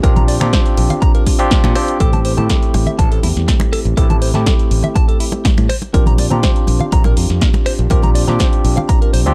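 Nu-disco at 122 BPM in A phrygian, sensual and sleek, this cut from a longer piece opens on a drop before moving from Bb69 to Am7 at 2.0 s and back at 5.7 s, carried by a punchy, up-front electronic kick, a tape-warm house kit of finger snaps, hi-hat and snare in a small room, dry, damped congas entering at 0.2 s, a bright fingered electric bass, a clean, compressed direct guitar riff with subtle chorus, and a barky, overdriven tine electric piano with sidechain pumping and vintage 12-bit sampler grit.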